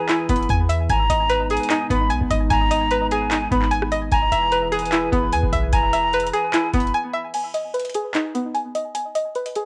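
This eerie, dark trap excerpt moves in a half-time feel, built on a bright, twangy, string-like resonator pluck that plays arpeggios up front with chorus, a low-pass filter and analog delay throughout. A hollow, airy concert flute carries a close-miked second line with vibrato and analog delay, while a dark analog pad holds detuned, wave-folded chords under a lush chorus. A booming analog drum machine with a deep kick, metallic hats, handclaps, rim clicks and crash cymbal has a dry, tape-warm cassette character. A clean 808-style bass adds deep, boomy sine lows from 0.3 seconds. The flute and bass stop at 6.9 seconds for a break, and from 7.3 seconds the pluck and drums carry on alone as a filter sweep passes over the pluck, all set in light digital ambience with a homespun cassette sound.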